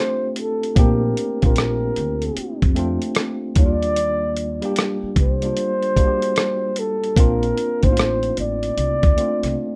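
Warm and sensual, this swung neo-soul R&B fragment, cut from a longer piece, sets a breathy, whispered flugelhorn up front with scooped notes, light vibrato and a dark, smooth top, singing an intimate jazz-style solo over a worn, slightly out-of-tune tine electric piano moving through Bbmaj9, Ebmaj9 and back. A gritty, compressed sampler-style drum kit enters at 0.4 seconds with a thumpy kick, hi-hat and rim click, joined at 0.8 seconds by a woody pizzicato upright bass. Light reverb gives the rough home-demo mix its intimate glow before a break at 9.6 seconds.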